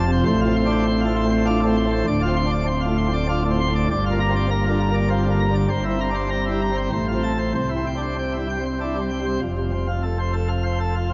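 A solo pipe organ on full plenum, brilliant with mixtures and a touch of chiff in its baroque voicing, sits up front and spans D1 to C6 in this jubilant classical toccata in F major at 99 BPM in 3/4. The short cut moves through F/A, Dm7, Gm7 and C7/G before settling on F at 9.4 seconds, where a new section begins. A wet church reverb of 3.3 seconds surrounds the organ, and the dark production rolls off everything above 7.5 kHz.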